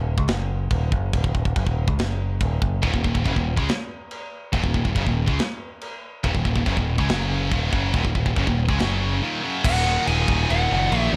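Aggressive and relentless, this heavy metal excerpt in Eb minor at 141 BPM opens on a growling, overdriven picked bass and a tight, up-front acoustic drum kit with china and crash cymbals, joined at 2.8 seconds by a pair of bright high-gain riff guitars (one scooped and set back in the mix) churning between Ebm and Gb5, before a brief break at 9.2 seconds drops into a half-time passage where a double-tracked distorted guitar and a dark, high-gain lead guitar enter, all in a small room with a dark production.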